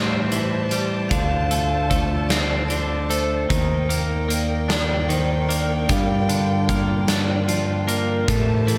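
A slow 6/8 pulse with a straight feel carries this melancholic, brooding post-rock excerpt, cut from a longer piece, with a huge arena drum kit arriving at 0.3 seconds to lay down punchy kick, medium-tuned snare and hi-hat in a big room. A bright, twangy twelve-string electric guitar sits up front, its clean picked arpeggios compressed and doubled by a slapback echo, while a vibraphone struck with hard mallets adds metallic, ringing arpeggios higher up, also touched with slapback. Beneath them a growly fingered electric bass holds the low end with a direct tone, and a rich chamber string section sustains bowed chords with focused vibrato. The harmony moves from Am7 through Dm7, Ebmaj7 and Gm7 before returning to Am7 near the close. Everything sits in a lush hall reverb that gives the whole arrangement a big arena scale.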